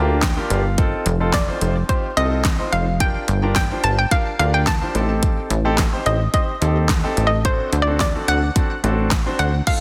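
A punchy, funky analog bass with sidechain pumping drives this confident, energetic dance-pop excerpt in G minor at 108 BPM, joined at 0.2 s by an up-front pop drum kit with a fat snare and handclaps, while a clear concert grand piano opens with a brief fill and pumps beneath a hollow, nasal square-wave pluck melody with chorus and digital delay that enters at 1.3 s, the mix sitting in light digital ambience under a dense, heavily limited modern master.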